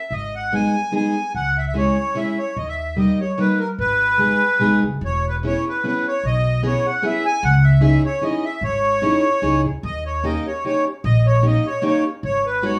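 A live-in-one-room studio sound with wet reverb frames this whirling, nostalgic musette waltz in G# minor at 149 BPM, cut from a longer piece, where a reedy, sweet accordion with light tremolo tuning carries the melody up front, a fresh-stringed, picked parlour-style plugged-in steel-string acoustic guitar enters at 0.5 seconds with warm accompaniment, and a woody, thumpy pizzicato upright bass on gut strings anchors the harmony as it moves from G#m through E6 and C#madd9 to a closing G#m7.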